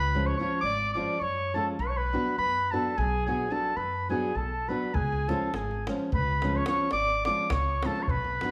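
A classical-style clarinet sings the bittersweet, virtuosic lead up front in this Balkan wedding-band folk excerpt in 11/8 at 210 BPM, joined by a mellow, distant trumpet on the second line, a fingerpicked nylon-string guitar with fresh strings, and a woody pizzicato upright bass moving between C# and Bm, while a tight, dry davul joins at 5.0 s, all played live together in a large, reverberant studio room.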